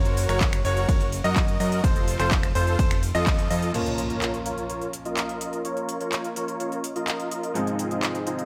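Emotional and anthemic, this festival progressive house excerpt opens on a drop where a huge, detuned supersaw riff, brilliant piano arpeggios and a fat, saturated analog bass all pump with sidechain, while an overdriven electronic kick sits up front over a crisp, tape-tinged big-room kit of hi-hat, handclaps, finger snaps, crash and ride. A band accent lands at 3.3 seconds and the kick drops out shortly after. At 3.7 seconds the bass and bright piano give way as an electronic impact hits, a worn-sounding grand piano takes up accompaniment and a lush, warbling unison pad with chorus holds chords in the background under a filter sweep. The chords move from Gb and F in the drop to Bb minor and then Ab6, all within light digital reverb.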